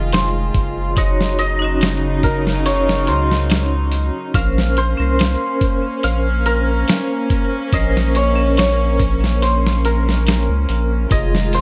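A straight, unhurried trip hop groove in 4/4 comes from a compressed, gritty sampler-style kit, with a thumpy kick, medium-tuned snare and hi-hat up front from 0.1 s, over a deep, round analog bass with a fast attack. Above it, a shimmering hammered santur carries the melody through 12-bit sampler grit and tape echo, while a bright, metallic vibraphone struck with hard mallets adds tremolo-laden accompaniment, and a nasal, reedy chamber string section with a gut-string tone sustains bowed chords. The harmony moves from Fm7 to Ebm7/Gb, then rests on a long Bbmadd9 before returning to Fm7, giving this brooding, hypnotic fragment of a longer piece a studio reverb.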